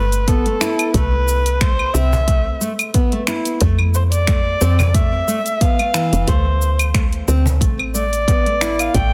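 Organic downtempo at 90 BPM with a gentle 16th-note swing and a mystical, meditative mood, this piece is led by a dark, boxy bowed kamancheh with expressive vibrato and portamento, set up front over fingerpicked nylon-string guitar arpeggios (both touched by digital delay), a soft, round FM bass with sidechain pumping, a deep electronic kick, a deep house kit of claves, finger snaps, shaker and dark hi-hats with soft clipping on the snare, and a distant cajon heard from 2.1 to 7.6 seconds, all moving through A7(no3), Cmaj7, Fmaj7 and D5 in light small-room reverb and a dense, heavily limited master.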